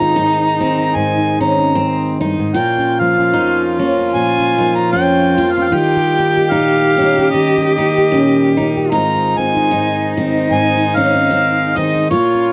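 Acoustic folk for a small band, reflective and haunting, with a gentle swing and a dry, close 1970s-style studio sound touched by light reverb. Up front, a warm harmonica with light vibrato and a soft attack carries the melody, while a sul tasto cello with an airy bow plays an intimate second line beneath it. A thumb-plucked nylon-string guitar gives classical accompaniment, a bright picked steel-string guitar adds arpeggios, and a reedy, nasal hand-pumped harmonium breathes sustained chords in the background.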